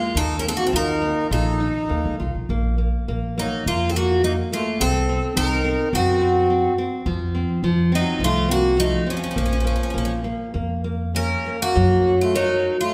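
Mournful and longing, this rubato fado-style ballad excerpt sets a shimmering, octave-doubled twelve-string guitar melody up front over a reedy, close-miked accordion second line, fingerpicked nylon-string guitar accompaniment with audible finger squeak, and a woody, growly pizzicato upright bass, all carried by the lingering reverb of a concert hall before a brief new section begins at 11.8 seconds.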